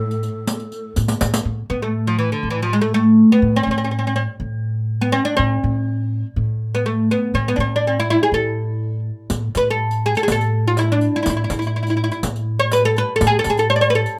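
A passionate Arabic maqam ensemble opens with a mellow, woody, fretless oud carrying the melody up front, joined for the first 0.9 seconds by a breathy low ney with vibrato and a bowed cello section in the background, all over a dark, thumpy pizzicato upright bass on gut strings. A close, dry riq adds a brief fill before dropping out, then returns at 9.3 seconds alongside the oud and bass through the rest of this fragment of a longer piece. A small room gives the playing a moderate, intimate ambience.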